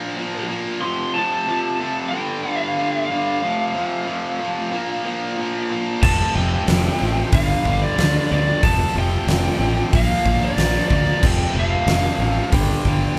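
A straight 4/4 hard rock groove at 92 BPM drives this heavy excerpt, where a warm, lo-fi lead guitar through a small cranked amp picks a melody with overdrive and digital delay over a tight, bright, double-tracked distorted riff guitar, joined at 6.0 seconds by a growly fuzz bass and a huge arena drum kit with a fat snare, punchy kick and bright cymbals, all played live together in one large, moderately reverberant studio room over chords moving among Bb5, F and G5.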